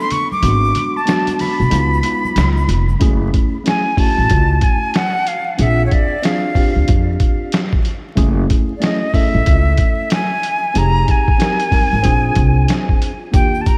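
A jazz flute opens this mellow, nocturnal jazz-hop excerpt, its airy, vibrato-laden tone sitting up front and trailed by a diffuse ambient delay, while a worn, slightly out-of-tune tine electric piano adds lightly overdriven chords and a tube shaker with congas rings softly in the background. The piece moves at 93 BPM in 4/4 with a swung sixteenth-note feel. A gritty, pitched-down boom bap drum kit comes in almost at once with hi-hat and a medium-tuned snare, though its thumpy kick drops out from 0.4 seconds until 3.0 seconds, while a woody, dark upright bass with gut strings is plucked up front from 0.4 seconds. Once the full groove settles, the harmony drifts through minor seventh and dominant chords, from F#m7 to a rootless A#9 and on to Fm7 and A#7. The percussion drops away after the opening and returns only briefly near the end. Vinyl crackle and a lush hall reverb give the whole mix a dreamy, soaked haze.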